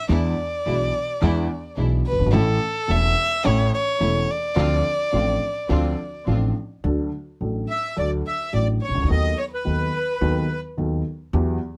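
A nasal, vibrato-rich violin takes the solo with expressive portamento through the first 6.8 seconds of this passionate, nostalgic rubato tango excerpt, over a dark, slightly detuned upright piano with audible action noise, growly pizzicato upright bass and gut-string chamber string stabs that stop at 6.5 seconds, before a reedy, up-front bandoneon carries the melody from 7.7 seconds, all in a dry, closely miked recording.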